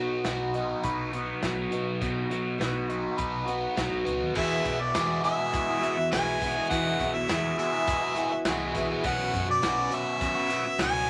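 A clear, up-front harmonica carries the melody from 4.4 s in this open-road folk rock and heartland rock excerpt at 102 BPM in E major, riding over a biting, double-tracked overdriven guitar riff with phaser, a shimmering octave-doubled twelve-string acoustic, a round hollow-body bass, a natural country drum kit with punchy kick, a very quiet reedy harmonium breathing sustained chords and a jingly tambourine, all set in a small room.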